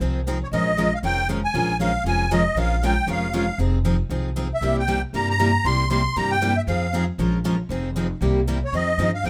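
A swinging 4/4 pulse drives this fiery jazz manouche excerpt, where two bright, full-bodied picked steel-string acoustic guitars (a dreadnought and a jumbo with audible finger squeak) comp alongside a dark, woody, thumpy pizzicato upright bass on gut strings, while a reedy, shimmering musette accordion enters at 0.4 seconds to carry the melody, the bass and accordion both sitting up front in a light reverb.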